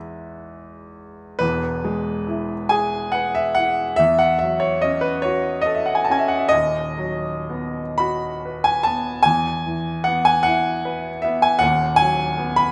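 In a 12/8 with free rubato at roughly 37-53 BPM in dotted quarters, this serene, nostalgic romantic nocturne in E major, taken from a longer piece, features a solo baby grand piano heard clear, intimate and up front, its natural tone spanning D#1 to E6 with audible action noise, moving through E, F#m7/E and B/D# harmonies inside a moderate recital hall reverb, with a soft, rounded top end and a faint mains hum beneath.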